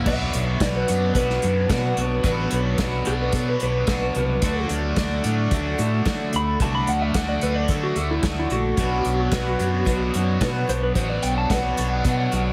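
Folk rock with a heartland rock lean, this jangly, nostalgic excerpt sets a dark, slightly broken-up electric slide guitar solo over a shimmering, octave-doubled twelve-string acoustic, a bright overdriven garage guitar riff with phaser, a round fingered electric bass and an up-front small-room drum kit played with bundle sticks, all moving between Bm and D under light reverb and a heavily compressed radio sound.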